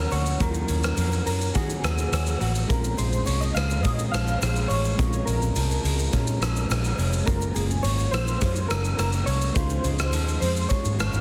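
A hazy, nostalgic slice of bedroom-leaning indie pop at 105 BPM, where soft, round synth keys carry the melody through tremolo, chorus, plate reverb and delay over a slightly broken-up guitar from a small old amp, a worn, slightly out-of-tune tine electric piano in the background with a cassette-tape tint, a dark, foam-muted fingered bass up front, a gritty garage drum kit with a punchy kick and soft clipping on the snare in a bright stone room, and a grainy egg shaker, all moving through Ebm7, Bbm7, Gbmaj7 and Dbmaj7 in a dense, heavily limited mix.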